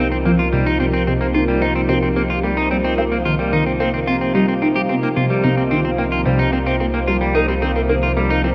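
Expansive and cosmic, this short excerpt from a longer piece is ambient, sequencer-driven space music in a straight 4/4, resting on a single C minor chord for its full 8.5 seconds. A sweeping, resonant pad holds sustained chords throughout, its detuned sawtooth tones evolving with a slow filter swell, a sub octave and a shimmer of chorus. A juicy, squelchy blip pluck plays a riff with a fast attack and short decay, colored by ring modulation, phaser, lush chorus, cassette tape grit and tape echo, while a filter sweep moves across the synth arpeggio sound. A clean, bright electric guitar sits up front with picked arpeggios trailed by tape echo, and a round, deep analog bass holds low on C2 beneath everything. The whole mix is bathed in a lush hall reverb with a 2.9-second tail, giving the piece a vast, floating sense of space.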